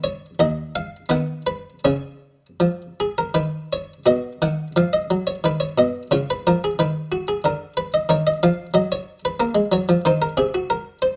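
In a flexible, rubato three-beat dance lilt, this radiant, baroque-style classical suite movement is played by a solo buff-stop harpsichord whose muted, lute-like pluck sits dry and up front, ranging from deep bass to bright upper notes, with a new phrase beginning at 4.1 seconds in this short excerpt captured by close, detailed microphones in light reverb.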